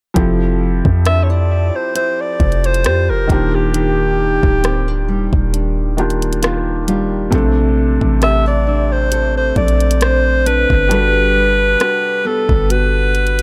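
Dreamy and romantic, this slow contemporary R&B piece at 67 BPM in F major drifts on lightly swung 16ths through Fmaj9, Ebmaj9, Bbmaj9 and Gmaj9 chords, pairing a mellow felt-muted upright piano with audible action noise and a dark, fingerpicked nylon-string guitar in the background fed through analog delay, over a deep, boomy 808-style bass up front and a soft-kicked electronic drum kit of hi-hat, kick drum and rim click, while a breathy, jazz-style alto saxophone solo enters at 1.1 seconds with its own analog delay, the whole set in an echo-heavy mix with light reverb.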